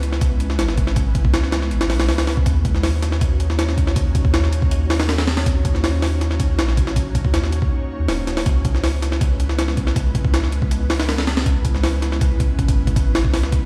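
Dark and atmospheric, this short cut from a longer drum and bass and jungle piece moves at 160 BPM in a straight 4/4, with a sampler-style drum kit and a soft dub sub bass both playing throughout its roughly 13.7 seconds. The drums sit up front, compressed, pitched up and gritty, with a thumpy kick, a high-tuned snare and hi-hat carrying a tape-warm character. Beneath them, the deep, round sub bass blends triangle and square wave tones, and the whole track sounds as if played on a big sound system in a bare stone room, with light reverb and vinyl crackle.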